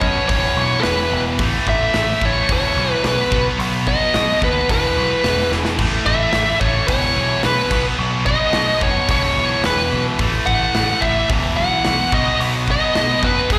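A straight 4/4 hard rock pulse at 109 BPM drives this aggressive, heavy excerpt, where a bluesy overdriven lead guitar sits up front with a distorted, slapback-echoed and analog-delayed melody over three bright picked rhythm guitars (a cranked stack, a background distorted guitar with overdrive and slapback echo, and a double-tracked high-gain one) cycling an E5, A5, E5, B riff, anchored by a growling overdriven bass and a polished, airy drum kit with punchy kick and bright cymbals that throws in a fill at 5.5 seconds, all heard like a live gig through the venue's PA with recital-hall reverb.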